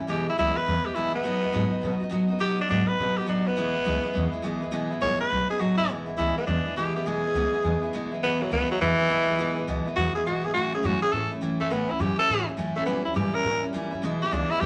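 A raspy, gritty tenor saxophone sits up front and close, carrying the melody with vibrato and scooped notes before taking a solo from 5.9 s to the end of this clip of an upbeat, rollicking rockabilly number at 207 BPM in E major with a swung eighth-note feel. Beneath it, a bright, picked steel-string acoustic guitar plays accompaniment, while a woody pizzicato upright bass holds down the low end. The harmony moves from E and B to A and a passing A#dim7 before landing back on E, all bathed in a wet studio reverb.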